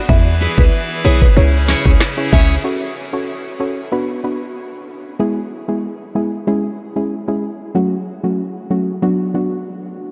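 A hollow clarinet-stop pipe organ opens this bouncy, sultry dancehall excerpt in F# minor at 94 BPM, holding sidechain-pumped chords. It is joined almost at once by a buzzing, woody marimba melody, a dark, round chorused pluck, a punchy 808-style bass, an up-front island pop kit of knocking kick, snare, smooth hi-hat and finger snaps with vintage 12-bit grit, and full-bodied picked steel-string guitar arpeggios in the background. After 2.6 seconds the soft pluck carries on alone until 9.6 seconds, its dreamy mix soaked in huge ambient reverb.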